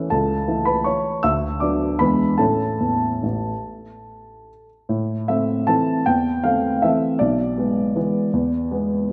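An upright piano with a woody, up-front tone plays alone in this short classical waltz excerpt, its playful, sparkling phrasing moving in a flexible rubato 3/4 at roughly 137-173 BPM across a range from A1 to E6. It opens in A major, then turns to A minor at 4.9 s for a contrasting second passage. A moderate concert hall reverb surrounds the dark, warm production.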